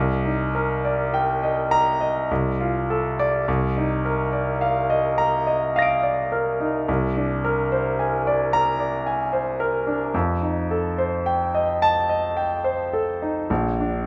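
A clear concert grand piano, up front with a natural tone and deep bass across a range from Bb1 to D7, plays this wistful, nocturnal fragment of impressionist classical solo piano in C dorian at a slow 54 BPM in 3/4, its uneven rubato beats moving through Ebmaj7/C, Cm11, Bb9/C and F9 before arriving at Bb at 13.5 seconds, set in a moderate recital hall reverb and tuned to A4 = 438 Hz.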